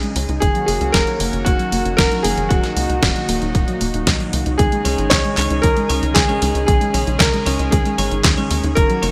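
A straight 4/4 groove from a punchy electronic kick and a detuned 8-bit drum machine with tape-warm handclaps, hi-hat and snare propels this danceable, romantic italo disco excerpt, where a tight sawtooth sequencer bass drives beneath and a clear, intimate concert grand piano melody with digital delay rides over a lush, detuned unison pad and a soft, round pluck arpeggio in the background, while a twangy clean electric guitar adds bright stabs from 4.8 s, set in a 1980s-style digital production with moderate plate reverb.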